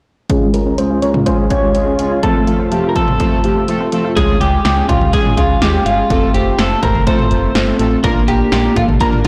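Synth-pop at 124 BPM in a straight 4/4, wistful yet bright, moving through Db, F and Bb chords in a wet recital-hall reverb with a blown-out, overdriven sound. A punchy analog drum machine with kick, snare, hi-hat and toms sits up front beside fat, brassy analog synth brass with chorus and vibrato, while a clean, picked twelve-string electric guitar carries the melody. An airy, evolving pad and a squelchy, resonant blip pluck playing arpeggios with delay sit in the background under a filter sweep until about 4.2 s, when a round, dark FM bass with transformer saturation enters.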